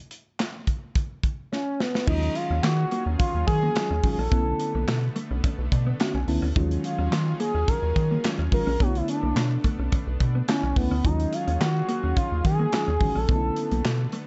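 Early-eighties boogie funk at 107 BPM in Eb minor, this late-night, danceable excerpt opens on a modern studio drum kit with a punchy kick, a medium-tuned snare, handclaps, hi-hat and crash cymbal, sitting airy and polished up front in a small room. A drum fill and the first phrase of an expressive synth lead arrive at 1.5 seconds, and at 2.1 seconds the full band settles onto a groove that alternates between Ebm11 and Bm11. The lead is smooth and nasal with vibrato, slapback echo and chorus. A rubbery square bass, hollow and bouncy with a filter pluck and moving notch, sits at the front of the mix. A mellow FM electric piano with a soft, round tone accompanies beneath and plays a fill from 5.4 to 6.6 seconds. In the background, a clean, fingered electric guitar riff with analog chorus and a thick, warbling unison pad of detuned sawtooth chords fill out the dark, warm production.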